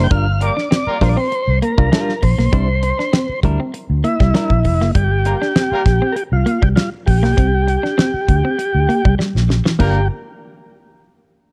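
Hypnotic and funky, this straight-feel funk groove in 4/4 is cut from a longer piece, and a smooth tonewheel organ carries the melody up front through a slow rotary speaker with vibrato. Beneath it, a vintage muted fingered electric bass sits forward in the mix, dark, round and punchy with a foam-muted, amped tone, while a damped 70s drum kit adds a fat snare, a tight kick, hi-hat and dark crash cymbals with a dry, airy, polished sound. Two clean, compressed electric guitars fill the middle, one picked riff running throughout and one fingered accompaniment part that drops out at 4.5 seconds and returns briefly near the end. A clear vintage horn section in pop style, doubled in octaves with a light vibrato, adds a second line in short entries at 0.4 and 5.3 seconds and again at 9.8 seconds. The harmony moves between Gm7, C9 and C7sus2, and a drum fill at 9.2 seconds leads into a new section, all heard through a small room and a cassette-tape sheen.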